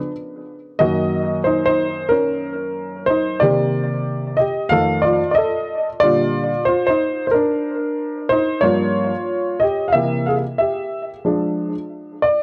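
A dark, woody upright piano opens this short cut from a longer hip hop piece, playing alone from 0.0 to 12.4 s across a range from F2 to F5. The mood is nocturnal and cool, set at 92 BPM in 4/4 with a 65% swing on the sixteenths, and the instrument is tuned slightly sharp to A4 = 445 Hz. Up front and intimate, the piano carries audible action noise and a slightly detuned, mellow character, with tape echo trailing its notes. The harmony moves through jazzy colours such as Gb6, Cm7, F7 and Bb6, passing Gm7b5 and C7 before settling on Fm6 at 11.2 s for a brief closing phrase. A small room adds moderate reverb, while the whole recording has a worn, cassette-like quality with warbling pitch drift.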